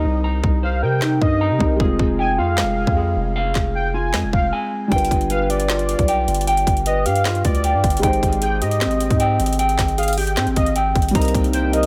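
This brooding, hard-hitting half-time trap cut opens with a velvety, detuned synth lead carrying a second line through chorus and delay. Beneath it sit a boxy, felt-muted upright piano with audible action noise, a dark, clean electric guitar playing arpeggios with delay, and a deep, sine-toned 808 bass sustaining under the Cm7 to Fmadd9 changes. The trap kit joins at 0.4 seconds, up front with a hard-clipped kick, woody snare, metallic hats and handclaps, and carries on as the harmony later moves through G7 and Abmaj7; at 11.2 seconds a French horn section with light vibrato adds sustained chords in the background as the progression returns to Cm7.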